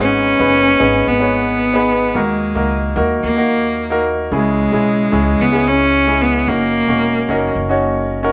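Recorded outdoors, the sound is dry, with little reverb around the players. In this earnest, dramatic pop excerpt in G# minor at 111 BPM, tuned to A4 = 441 Hz, a single bowed cello carries the melody up front with a biting, intense vibrato until 7.6 s. A polished concert grand piano with deep bass and a slapback echo provides the accompaniment, and a woody, thumpy pizzicato upright bass anchors the low end over chords moving from G#m through D#m and C#m to F#6.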